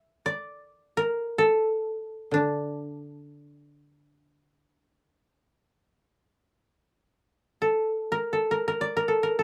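A dark, lightly reverberant production frames this short, austere and meditative passage of Japanese traditional music in free time, tuned slightly below standard pitch. A mellow, woody koto played with fingerpicks carries the melody up front from the start, while a second, dry koto adds a low accompaniment from 2.3 to 5.7 seconds beneath it. The brief phrase is heard twice before the cut at 9.4 seconds.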